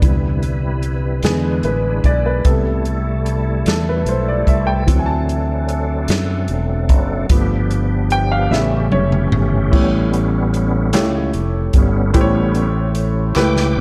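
A present baby grand piano takes a soulful solo from the start of this slow, reverent gospel piece at 50 BPM in 6/8. It plays over sustained chords from a bright, reedy tonewheel organ with key click, slow rotary speaker and chorus vibrato, and from a very quiet, mellow French horn section with classical-style vibrato. A fingered electric bass, direct and amped, sits up front beside a swinging big-band drum kit with a punchy kick, medium-tuned snare, crash, hi-hat and toms in an airy, polished hall sound. The harmony moves from Cmaj7 through E7, Am7/C, D7 and G7 to A7, and a drum fill at 8.5 seconds leads into the organ's solo from 9.7 seconds. A hollow, close and dry group handclap joins faintly at 10.9 seconds. Light reverb and a dark, warm production shape this cut from a longer piece.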